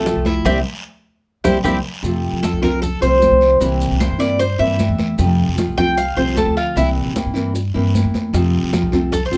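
A straight 4/4 pulse at 152 BPM drives this sunny, danceable slice of Cuban son and guajira in F major, cut from a longer piece. Ringing, high-tuned congas played with hard hands sit in the background, while a raspy guiro and grainy, mellow maracas add texture; very quiet, round, low-tuned bongos appear briefly near the opening and return at 8.3 seconds. After a drum fill and band accent at 0.5 seconds, the Cuban tres takes a solo from 2.0 seconds, its picked arpeggios up front with a metallic edge from the double and partly octave-doubled strings. Beside it, a full-bodied, fingerpicked nylon-string guitar with a deep classical tone, also up front, carries the accompaniment over chords that alternate between C7 and F. Underneath, a woody, dark upright bass on gut strings plays thumpy pizzicato lines in a low register. Close, detailed microphones and little reverb give the recording an intimate, present sound.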